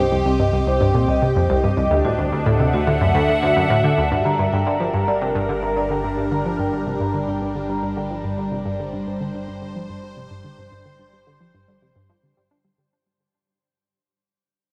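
Expansive and cosmic, this sequencer-driven space music excerpt at 109 BPM moves from Cm and D7 into G dorian at 4.1 s, with a swirling, bright phased analog pad holding sustained chords up front. A round, detuned analog pluck carries the riff through chorus and delay, while a ringing vibraphone played with soft mallets adds mellow arpeggios until 8.4 s. A fat, nasal analog bass sits in the background, and all of it is bathed in a huge shimmering reverb, with filter sweeps on the synth arpeggio and a fade-out beginning at 4.1 s.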